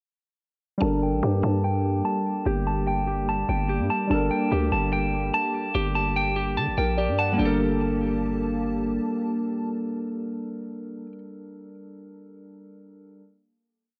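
A growling, buzzy 808-style bass with long sliding sub-bass notes drives this cold, menacing drill piece at 146 BPM in a half-time feel in G minor, alongside a clean, picked electric guitar looping arpeggios through analog delay, warbling lo-fi synth keys holding detuned, chorused chords under a filter sweep with a fill at 6.6 seconds, and a hollow, flute-like pad, until the breakdown gives way to a final chord at 7.4 seconds in a dry, gritty recording.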